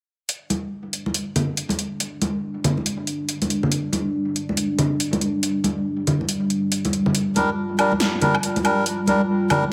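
Deep dubstep with a meditative, heavy half-time swing, built on a dark, detuned sawtooth analog pad whose chorused, sustained chords enter at 1.2 seconds and move through a filter sweep, over an overdriven electronic drum kit with a punchy snare, metallic hats and woodblock, up-front bright vintage congas washed in dub echo, and a reedy, breathy melodica that adds dub-echoed stabs from 7.4 seconds, all set in a moderate echo-chamber reverb in this passage cut from a longer piece.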